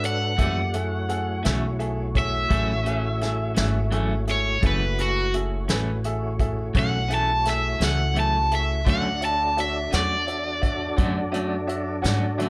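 Slow blues with a soulful, mournful 12/8 feel, where an up-front, overdriven cranked stack guitar carries the melody through spring reverb over a brilliant, open baby grand piano, a lightly overdriven tonewheel organ holding sustained chords with key click, chorus vibrato and a slow rotary speaker, a woody pizzicato upright bass, a distant, roomy brush drum kit with a rolled-off top, and a twangy, slightly broken-up electric guitar with tremolo that enters at 0.4 s, as the harmony moves from F#m7 to Dmaj7 at 8.9 s.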